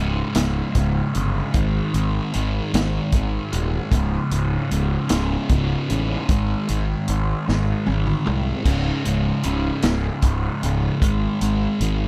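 Mysterious and dark, this brief psychedelic rock excerpt moves at a slow 51 BPM in 6/8, with a double-tracked, picked fuzz guitar riff run through distortion and phaser alternating between C#5 and G#5 chords over a round, overdriven fingered fuzz bass and a vintage drum kit with a punchy kick and a rolled-off top that plays a fill from 7.5 to 8.7 seconds, all set up front in an echo-heavy small room.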